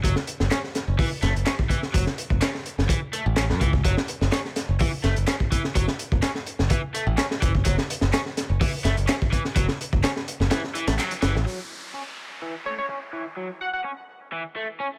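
Funky, energetic breakbeat built on a crunchy, saturated drum kit with a punchy kick and high-tuned snare, up front beside a bright picked electric bass, while a double-tracked overdriven guitar riffs over an F#m7 chord and faint layered handclaps sit in the background. The kick drops out from 10.5 seconds ahead of a band accent at 11.0, after which the drums and bass stop, a downlifter enters and the guitar gets a filter sweep. A catchy, detuned unison lead with a telephone-like, 12-bit sampler grit and digital delay appears briefly at 12.7 seconds, all in a dry, close sound.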